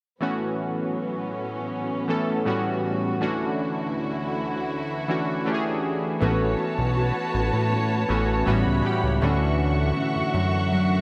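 Warbling, airy analog keys with chorus provide accompaniment in this smooth, romantic contemporary R&B excerpt at 80 BPM in A major. From 0.2 seconds they play alongside an intimate bowed string section holding sustained chords over A69, A13 and Dmaj9. At 6.2 seconds, a fat, up-front analog bass and a thumb-plucked nylon-string guitar playing background arpeggios with tape echo enter, and a synth keys fill arrives at 10.7 seconds, all floating in a dreamy cathedral reverb.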